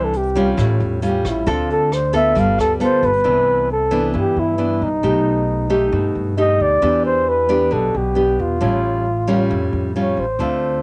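A straight 4/4 bossa nova pulse at 134 BPM opens this romantic, relaxed excerpt in C major, with a distant, roomy brush kit of boomy kick, hi-hat and rim click playing only from 0.1 to 3.1 seconds. A dark, breathy flugelhorn with light vibrato and a soft attack takes a jazz solo up front through the first 3.3 seconds and carries the melody to the end, beside a full-bodied, fingerpicked nylon-string guitar with audible finger squeak, while a woody pizzicato upright bass holds the low end. The horn, guitar and drums share a cassette tape coloring, and the whole home cassette recording sits in light reverb with its top end rolled off above 10.6 kHz.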